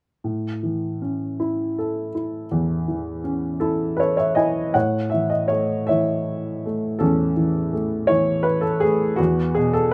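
In 6/8 at 54 beats per minute counted in dotted quarters, this short classical fragment moves with a free, rubato pulse that suits its peaceful, tender mood. A lone grand piano carries everything from 0.2 to 9.9 seconds, ranging from E2 up to G#5. Its tone is dark and worn, with a boxy, short-sustained body and the clatter of its action audible under the notes. Close, detailed microphones and a nearly dry room keep the instrument up front and intimate. The harmony rests on A at the opening, a small fill from 3.6 seconds leads into a new section at 4.8 seconds, and the passage arrives on E near 9.2 seconds before this cut from a longer piece ends. The tuning sits at A4 = 437 Hz.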